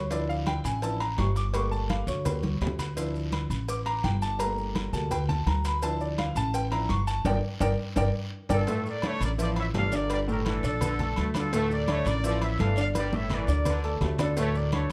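Salsa with a driving, fiery energy, heard here as a cut from a longer piece. A clear, woody upright piano sits up front and carries the opening 8.7 seconds as a solo over a woody, thumpy pizzicato upright bass with gut strings, while a bed of background percussion fills the groove: bright thin-skinned congas, a tight high-tuned cowbell, ringing metal-shell agogo bells and timbales, a raspy guiro and grainy maracas. Drum fills break through at several points, and a band accent gathers the players from 7.2 seconds as the harmony settles on a plain minor chord. At 8.5 seconds a mellow, punchy trumpet section enters with the melody, joined moments later by a brilliant trombone section playing a tight second line in the background, both with light vibrato. The production is dark and gently reverberant, with the piano and bass kept up front.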